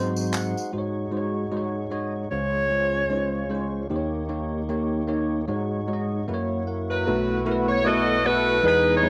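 Uplifting and jubilant, this short cut from a longer uptempo gospel piece moves at 151 BPM in 4/4 with a swung eighth-note feel, tuned a little below standard pitch. A bell-like tine electric piano carries the accompaniment throughout, clean and up front, its tone colored by analog chorus and cassette tape. Beneath it a tonewheel organ holds sustained chords, lightly overdriven with chorus vibrato, audible key click and a stopped rotary speaker, bathed in plate reverb. A brief burst of tambourine, egg shaker and group handclaps sounds in a small room near the start, and a bright, present alto saxophone with pop-style vibrato sings a single note from 2.3 s. The harmony moves through chords such as Ab7sus4, Dbmaj7 and Gb7 before shifting to B7sus4 at 7.1 s, just after a saxophone section enters at 6.9 s with a smooth top, light vibrato and jazz phrasing, carried by tape echo over the home-recorded cassette sound.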